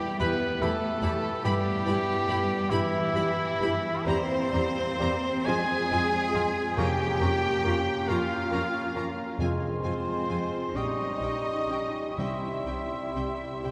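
A slow, rubato pulse in 6/8 carries this solemn, yearning classical passage, cut from a longer piece and moving from E minor into F minor after about four seconds. The cor anglais sits up front with a light vibrato as a second line, joined by a clear, distant violin section in the background, a pure flute with rolled-off highs and a very quiet, roomy clarinet. Beneath them a lush cello section and double bass section carry the bass, while a smooth viola section and a close-miked bassoon fill the accompaniment, and a vintage-toned French horn section holds sustained chords. A very quiet concert harp rings out fingerpicked arpeggios, and a focused violin section plays the melody very softly in a high register. Timpani with calf heads and medium mallets enter at 6.8 seconds, adding weight in the background. The whole ensemble sits in a cathedral reverb with a long, wet tail.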